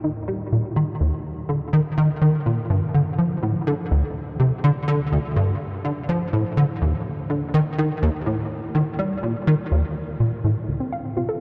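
A punchy, sawtooth-edged analog bass riff drives this expansive, mysterious space-music fragment at 124 BPM, its ensemble chorus and delay blooming into a huge, dark reverb as the harmony moves from Eb to Dm, until a warbling, lo-fi pluck slips in with brief arpeggios at 10.8 seconds.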